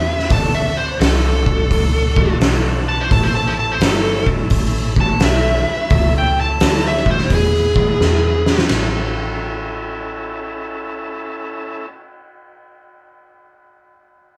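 Driving and gritty, this blues rock and southern rock power-trio excerpt swings at 86 BPM in A major, with a smooth, overdriven lead guitar soloing up front until 8.7 seconds over chords moving from D to A to E and back to A. A thick tonewheel organ turning through a slow rotary speaker holds sustained chords, while a round, foam-muted vintage bass anchors the low end. An oversized, low-tuned drum kit, boomy in the kick and fat in the snare with a saturated, rolled-off top, sits forward in a lightly reverberant live-room sound and plays a fill from 8.0 to 8.7 seconds before the music moves into a new section.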